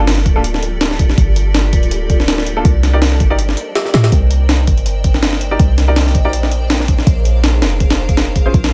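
An atmospheric, frenetic drum and bass excerpt with a jungle edge opens on a deep, boomy 808-style bass and baby grand piano stabs treated with dub echo, joined at 0.1 seconds by an up-front breakbeat sampler-style kit with a thumpy kick, a high-tuned snare and gritty, pitched-up hi-hats, all swung over a minor ninth chord progression in a fairly dry mix.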